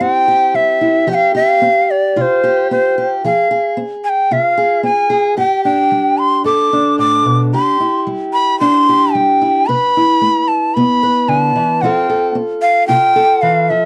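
A bright, airy shakuhachi carries the melody up front with crisp, chiffy attacks and vibrato over a fingerpicked archtop guitar with audible finger squeak, in a hopeful, peaceful acoustic folk passage at 112 BPM in 4/4, moving through chords like C, Fm and Cadd9 with light reverb and the soft grain of a home cassette recording.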